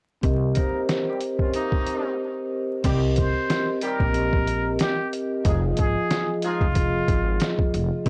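Gritty and reflective, this 92 BPM boom-bap hip-hop excerpt swings on a compressed, pitched-down sampler-style drum kit with a thumpy kick, woody pizzicato upright bass growling beneath soft-mallet vibraphone through cassette-tape haze as the harmony moves from Cm7 to Fm7, while distant horn stabs with tape echo enter at 0.5 seconds, a break arrives at 2.2 seconds, and a plunger-muted trumpet takes a brilliant wah-wah solo from 3.2 seconds over dry, vinyl-crackled hardware grit.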